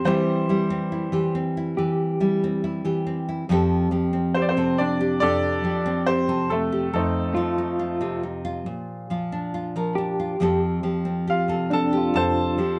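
A straight, unhurried 4/4 pulse carries this tender, heartfelt acoustic folk-pop ballad, cut from a longer piece. A bright upright piano sits up front with the melody, its woody, polished tone ringing brilliantly from A3 up to A5, while a full-bodied, fingerpicked nylon-string guitar shares the foreground with deep classical accompaniment. At 1.8 seconds an electric guitar on the edge of break-up joins with compressed, fingered arpeggios in a narrow middle range, its slightly gritty tone shimmering with tremolo. The harmony moves from C/E to Fadd9, then F7 and Bb before settling back on Fadd9. A moderate studio reverb and a dark, warm production wrap the three parts in an intimate glow through to 12.8 seconds.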